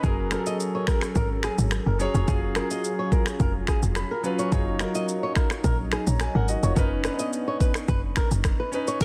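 A sunny, romantic afrobeats excerpt opens with an electronic drum kit of deep kick drum, finger snaps, rim clicks, shaker and crash cymbal carrying vintage 12-bit sampler grit, a punchy, woody log drum bass up front, an open concert grand piano accompaniment with a brief fill at 3.7 seconds, a dark, boxy, thumb-plucked flamenco guitar riff with finger squeak and digital delay, and a smooth, detuned sawtooth pad with chorus sustaining mellow chords in the background, before a raspy, growling alto saxophone with breathy vibrato enters at 9.0 seconds.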